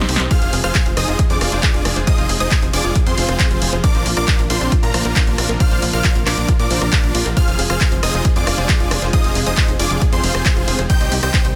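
A short drum-machine fill of snare, claps, rim click and hi-hat opens this euphoric, bittersweet uplifting trance excerpt before a punchy electronic kick lands up front at 0.3 seconds. A huge, bright supersaw lead carries the melody over Fm, Bbadd9 and Cm, with a detuned supersaw stab high above it and a very quiet, airy pad holding sustained chords beneath. A tight, driving sawtooth sequencer bass and a lush pluck playing arpeggios in the background pump against the kick, while dub echo trails the lead, stab and pluck in a dry, dense, heavily limited mix.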